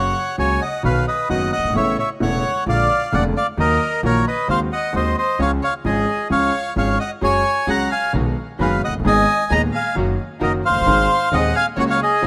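A rubato 4/4 tango feel carries this passionate, nostalgic fragment of a longer piece, with a reedy bandoneon leading up front over a vintage, deep-bassed concert grand piano and a woody, thumpy pizzicato upright bass, an earthy solo violin adding a bowed second line in the background, and a very quiet, distant chamber string section floating in with soft-edged stabs at 7.2 s, the whole mix carrying light small-room reverb and the rough character of a home demo.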